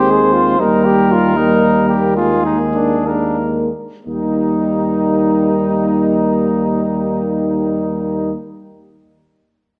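A classical brass quintet passage in a rubato 6/8 that slows over its first 4.1 seconds, triumphant and warm, with a dark, lightly vibrato trumpet up front carrying the melody over a punchy, distant flugelhorn second line, a smooth-topped French horn and roomy euphonium in accompaniment, and a tuba on the bass, all five parts playing throughout and bathed in a wet recital-hall reverb.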